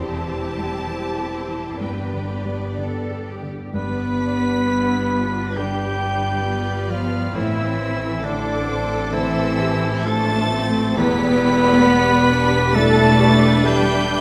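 This cinematic passage, cut from a longer piece, opens at a slow, rubato 61-68 BPM with a distant, lush violin section carrying the high melody over a close, focused second violin line, bowed violas, a rich cello section, smooth and even double basses, an intimate piano with audible action noise, and a very quiet, mellow harp playing arpeggios. At 3.7 seconds, a pure, straight-toned flute and a vintage-sounding solo oboe add second lines while a tight French horn section holds sustained chords, as the harmony moves from C/E through G and Am to Em7. A wet scoring-stage reverb places the music further back in the room, lending it a longing, moving glow.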